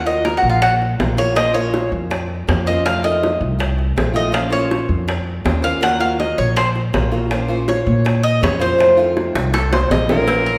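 Sultry and danceable, this excerpt from a longer Cuban son and guajira piece moves at 161 BPM in a straight 4/4, set in Bb harmonic minor over a cycle of Ebmadd9, Bbmadd9 and F7. The Cuban tres leads from the start with up-front, metallic arpeggios on its double strings, some doubled at the octave, taking a solo for the first 10.3 seconds. Beneath it, a boxy, picked old ladder-braced acoustic guitar fills in the accompaniment, while a woody, thumpy upright bass with dark gut strings plays pizzicato close to the listener. Round, low-tuned bongos and cowbell, played with soft hands and given a compressed, saturated edge, drive the groove and break into a fill from 9.4 seconds. Just at the cut, around 10.1 seconds, a clear, punchy alto saxophone with vibrato steps forward on a single note, joined by a small, very quiet fingerpicked nylon-string guitar, all set in the wet reverb of a recital hall.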